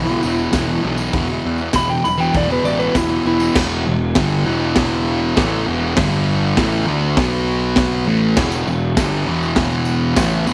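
Garage rock with a swaggering, raw feel, cut from a longer piece: a slightly broken-up electric slide guitar played with fingerpicks carries the melody only until 3.6 seconds over a thick, double-tracked, up-front fuzz guitar riff and a round, punchy, overdriven picked bass. A gritty, saturated drum kit with dark cymbals, a high-tuned snare and a boomy kick enters at 0.5 seconds in a pumping small room, and a jingly vintage tambourine sits in the background. The tambourine returns at 8.5 seconds, after the chords have moved from E5 through G5, Asus4 and B5 back to E5.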